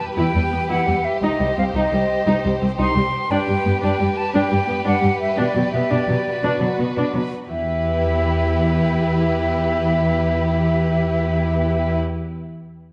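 An airy silver flute and two lush, vibrato-rich violin lines open this determined, adventurous cinematic cue in E minor at 115 BPM in 12/8, with a barely audible ringing harp dropping out at 2.8 seconds, while a portamento-laden viola section and an up-front, even cello bass join at 0.2 seconds beneath chords moving from Em through Cm, G and Bm back to Em at 7.5 seconds, all bathed in a moderate scoring-stage reverb.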